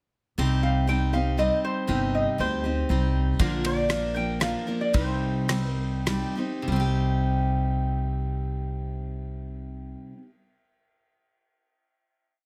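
Dusty and brooding, this short honky-tonk and classic country piece sits in a 3/4 feel, moving from Cm to Bb and back to Cm. An up-front jumbo steel-string acoustic guitar strums eighths in open chord shapes with a bright, full-bodied tone. Beside it, a woody, thumpy upright bass on gut strings, also up front, plays root-and-fifth lines with walk-ups. A lap resonator guitar played with fingerpicks carries the melody in metallic, nasal slide phrases, building its motif in sentence-like shapes until about 6.0 seconds. A damped 70s drum kit, dry with a tight kick, ride cymbal and rim click, enters at 3.4 seconds with a 3/4 groove as the music slows down, and from 6.7 seconds the piece rests on a final chord under light reverb.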